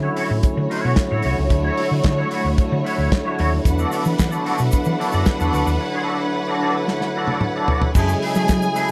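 A bright, twangy clean electric guitar with ensemble chorus, a fat tonewheel organ turning on a slow rotary speaker and a round, punchy hollow-body bass open this driving, glamorous disco excerpt as the chords move from Dmaj9 to E9sus4 and on to F#m9. A dry, damped 70s drum kit sits up front with a tight kick, snare, hi-hat, handclaps, toms and dark crash cymbal, while a lush, bowed studio string section carries a smooth second line with vibrato. A grainy egg shaker enters in the background at 3.7 seconds, and a drum fill runs from 6.9 to 8.0 seconds.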